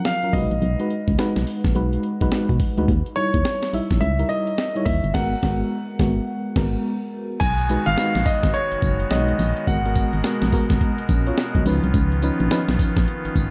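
A gritty, compressed breakbeat kit with a thumpy kick, hi-hat, tambourine and crash drives this flirty, upbeat new jack swing at 106 BPM with a swung sixteenth feel, while a punchy, round FM bass holds down the low end. A dark FM electric piano with tremolo and a noise layer carries chords such as B6, D#7b9 and G#m9, and an intimate, polished grand piano with audible action noise and tape echo plays a melody up front until 10.8 seconds, with a band accent arriving at 5.1 seconds. At 7.4 seconds a soft reed pipe organ with an oboe stop and a touch of chiff adds sustained chords beneath, all set in light reverb within a warm production.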